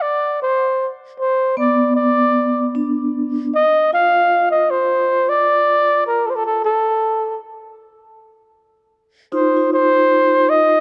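A moderate plate reverb with a long, 3.1-second tail surrounds this intimate recording, tuned slightly sharp to A4 = 441 Hz and cut from a longer piece. It is a slow, heartbroken acoustic folk-pop ballad at 78 BPM in a straight 4/4, with a reflective mood. A breathy flugelhorn carries the melody from the very start, sitting up front with a mellow, whispered tone, soft attacks, scooped notes and vibrato, phrased in a jazz style between A4 and F5. At 1.6 seconds a vibraphone played with medium mallets enters underneath, spinning quiet arpeggios in a lower register with a metallic, ringing shimmer and a fast motor vibrato. The harmony moves from Bm to Dm, through a passage that drops its chords, and settles on an F7 lacking its third before both instruments stop at 10.8 seconds.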